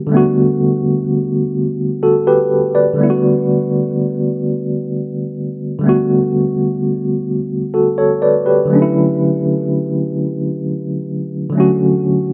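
R&B in a slow 6/8 at 42 BPM (dotted quarters), this sensual, warm fragment of a longer piece features a solo tine electric piano, worn, mellow and slightly out of tune, playing up front through a combo amp with a medium tremolo, opening on a Gmaj9 chord and ranging from D3 to D5 over 12.3 seconds within a light digital reverb.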